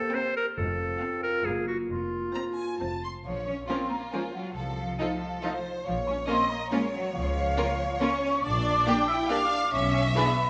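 Heard in a reverberant recital hall with a hint of lossy compression grit, this short cut from a longer piece is a playful, whimsical film cue in Bb minor, moving at 138 BPM in a straight 3/4 with a mischievous, quirky air. A close, expressive chamber violin section carries the melody with rich vibrato, while a second violin section sits in the background on a smooth, even supporting line. A bright solo clarinet plays up front at the start, giving way at 3.2 seconds to a mellow flute ensemble with pure tone, soft attacks and rolled-off highs. Underneath, a viola section with a focused, smooth top provides the accompaniment, and a dark, tight French horn section holds sustained chords. Entering at 0.6 seconds, a distant cello section and a close double bass section with vibrato share the bass. The harmony circles F in the opening section before turning at 3.3 seconds to Bb minor, ending on E7/B.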